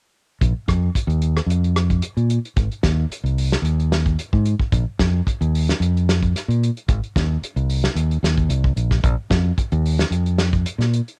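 A fingered electric bass and a soul drum kit come in together at 0.4 seconds, setting up a funky, driving afrobeat groove in 4/4 with a light sixteenth-note swing. The bass sounds warm, direct and amped, sitting up front in a low register. The acoustic kit, treated with cassette tape coloring, pairs a fat snare and tight kick with hi-hat and rim clicks in a roomy, slightly distant booth sound. This dry home cassette recording is a brief cut from a longer piece and runs until 11.2 seconds.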